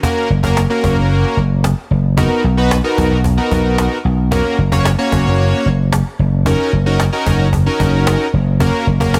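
A punchy, amped vintage slap bass sits up front in this upbeat, euphoric dance-pop excerpt in F# major at 112 BPM, entering at 0.3 seconds in its low register. Alongside it, a fat, detuned sawtooth polysynth, also up front, with a fast attack and chorus holds bold, sustained chords through F#, Bmaj7 and D#m7/F#. A snappy, close cajon with snares drives the straight 4/4 feel, all set in a digital ambience.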